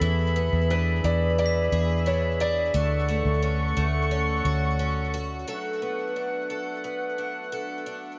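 A distant woodwind section holds sustained chords while a shimmering, octave-doubled twelve-string acoustic guitar picks arpeggios through subtle chorus and digital delay, over a round, punchy muted electric bass that stops at 5.4 s, in an ethereal, floating dream pop excerpt at 88 BPM in D lydian. From 0.7 s a soft, felt-muted upright piano carries a short, intimate melody with audible action noise and its own digital delay, and a very quiet glockenspiel adds a sparkling bell note at 1.5 s. A huge ambient reverb surrounds the sound as the chords move from E7 to Dmaj7 and settle on D6.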